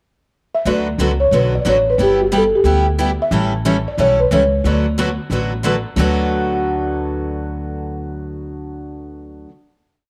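Playful and swinging, this short, complete piece of acoustic string swing in the manouche tradition moves at a brisk 181 BPM in D major, its eighth notes lilting with a light swing. A buzzing marimba played with soft mallets carries the melody from 0.5 seconds, its hardwood bars giving a round, mellow, dry tone as it sings short motif-based phrases up front until 5.6 seconds. Two bright picked steel-string acoustic guitars enter at 0.7 seconds: a full-bodied jumbo picks four to the bar with short accents on two and four, while a parlour guitar adds a second rhythm part. The upright bass, woody and thumpy with gut strings, plays a two-beat root-and-fifth line with walk-ups through changes of D6, G6 and A7 before settling back on D6. A moderate spring reverb and small room ambience surround the group as the guitars and bass hold the final chord to the close.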